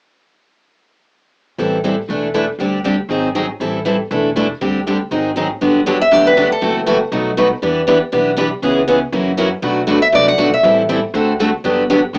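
A brisk, swung four-beat pulse drives this lively, charming clip of acoustic string swing in the jazz manouche style. A plugged-in jumbo steel-string guitar gives full-bodied rhythm accompaniment with audible finger squeak, joined by a picked steel-string guitar, while a pizzicato upright bass on gut strings adds a woody, thumpy low end underneath. Another picked steel-string guitar, sitting up front and loudest in the mix, plays short melodic phrases at 6.0 and 10.0 seconds. Between those two guitars, one has a boxy parlour tone with fresh strings and the other a bright auditorium body. The harmony cycles through a minor seventh, suspended dominants and an Ab7 in the first section before settling onto a major seventh chord at 5.6 seconds for a second section. The sound is that of a home cassette recording with an AM radio character and a small, moderate booth ambience, and it is cut from a longer piece.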